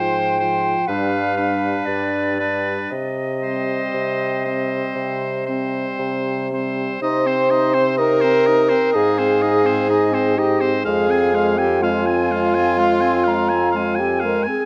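Melancholic and solemn, this slow romantic movement for wind quintet unfolds in C minor at 57-64 BPM in 4/4, with a rubato feel that lets the phrases breathe. The silver concert flute carries the melody in a pure, straight tone with a crisp attack, sounding somewhat distant yet expressive, while the bright oboe adds a second line with light vibrato and a present quality. Beneath them, the clear French horn and the warm clarinet fill out the accompaniment, the horn shaped with a soft attack, and the mellow bassoon anchors the bass from up front before dropping out at 14.4 seconds, just ahead of the others. The harmony moves from F minor over Ab through G7 to C minor, later turning to Ab and back to F minor as the opening idea returns at 7.0 seconds. Close, detailed microphones capture each instrument in a moderate recital hall reverb, giving this fragment of a longer piece an intimate yet resonant sound.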